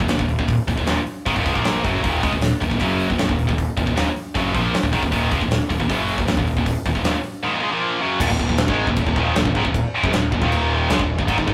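A heavy, high-gain electric guitar leads this powerful, anthemic hard rock clip, its picked, distorted riff sitting up front and built on an Eb5 power chord. A second, tighter distorted guitar riffs along from the background. A fuzzy, overdriven electric bass adds punch underneath. A big acoustic rock kit with a punchy kick, medium-tuned snare, hi-hat and crashing cymbals drives the straight 4/4 groove from the front, its sound polished and airy. The whole cut has the rough, tube-saturated character of a rehearsal-room recording, wrapped in a wet small-room reverb, and it moves into a new section at 8.2 s before it is cut off at 11.5 s.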